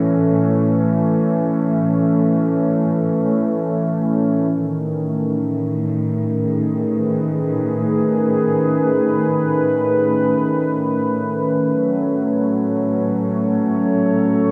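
A dreamy, cassette-tinged mix soaked in a cathedral's long reverb frames this peaceful ambient passage in free time, cut from a longer piece, where an up-front, warbling analog pad with a soft attack and chorus sustains warm chords from Amaj7 through Amaj9#11 to F#m/A while a dark, woody bowed cello section holds a low bass tone beneath it throughout.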